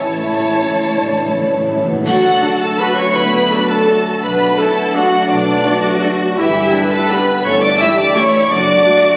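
A sweeping, elegant classical ballroom waltz in D major at 167 BPM opens with a rich, up-front violin section carrying the expressive melody over a hard-mallet timpani fill and a mellow bassoon, while hollow, airy flutes, a distant clarinet and a very quiet second violin section trace second lines; chamber violas, cellos and dark double basses sit in the background alongside a ringing, thumb-plucked harp and roomy French horn chords. Tight trombone chords enter at 2.0 seconds, and at 2.1 seconds a brief accent with dark cymbals and bass drum brings in mellow trumpet stabs, all with a rubato sway and a wet scoring-stage reverb.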